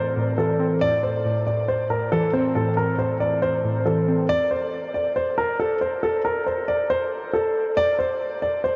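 Melancholic and menacing, this short hip hop excerpt moves at 138 BPM with a half-time feel in A phrygian, set in a dreamy, reverb-soaked space with a huge ambient tail. A dark, mellow baby grand piano carries the melody up front throughout, its intimate tone marked by audible action noise, a short sustain and tape echo. Warbling, detuned lo-fi synth keys with a nostalgic chorus shimmer and filter sweep support it over an A minor chord until 4.3 seconds, after which the piano continues alone.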